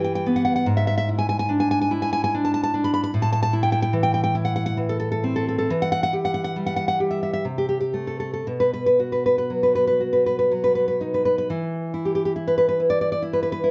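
Romantic solo classical guitar in E minor, intimate and passionate, its nylon strings fingerpicked up front with a warm, acoustic tone in a rubato 3/4 at 56-77 BPM, moving from Em/G through Am and B before the harmony drops away at 11.5 seconds, all set in a dark production with a recital-hall reverb in this short excerpt from a longer piece.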